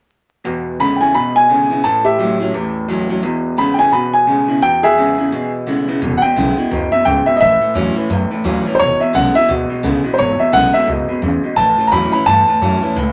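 Rollicking and rowdy, this short rockabilly excerpt cut from a longer piece bounces along at 173 BPM in 4/4 with a swung eighth-note feel, centred on E mixolydian and moving between E7 and A7. A twangy, slightly broken-up electric guitar through a small old amp drives a low riff from 0.4 seconds, sitting up front beside the piano. Underneath, a full-bodied jumbo steel-string acoustic guitar is picked as accompaniment, its finger squeaks audible in the mix. The upright piano carries the melody high in its range with a natural, woody tone, standing out as the loudest voice. At 6.0 seconds a thumpy pizzicato upright bass joins, adding a low acoustic pulse as the music moves into a new section. Moderate studio reverb and a layer of vinyl crackle lend the recording a vintage, roomy character.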